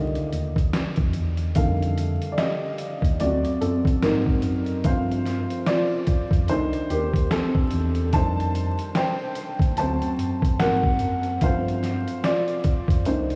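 A dark, woody upright piano opens the piece, carrying the lead throughout, while a mellow tine electric piano holds down the low bass line beneath it. The piano sits up front with a smooth, vintage character and the softened wear of cassette tape. At 0.2 seconds a lo-fi, sampler-style drum kit enters with a thumpy kick, a medium-tuned snare and hi-hat, sounding compressed, pitched down and muffled, with the grit of an old 12-bit sampler. The harmony cycles through rich jazz chords, from a rootless Cm69 through F13, D7 and Ab9 to a G7sus4 before returning, and the swung sixteenths give the groove a relaxed, nostalgic lean. A huge ambient reverb and vinyl crackle soak the mix in a dreamy, reflective haze, and the recording feels like a passage cut from a longer piece.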